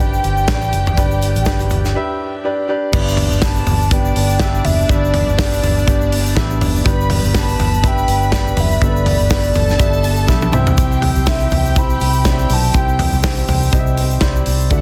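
Anthemic and hopeful, this piano-driven pop excerpt moves with a lightly swung 4/4 feel, cut from a longer piece. A hollow, clarinet-like synth lead carries the melody with chorus and phaser, singing high until it drops out at 13.9 seconds, while a lush, bowed violin section traces a second line alongside it. A clear, woody upright piano with long sustain fills out the accompaniment, anchored by a dark, round, foam-muted fingered electric bass that sits punchy and low. A modern studio drum kit, up front with a punchy kick and medium-tuned snare, joins alongside a grainy egg shaker tucked very quietly in the background. After a brief break at 2.0 seconds, the band settles into a long passage on G, and a drum fill at 10.3 seconds leads into a shift to C. The small room ambience and dense, heavily limited master keep the sound close and loud.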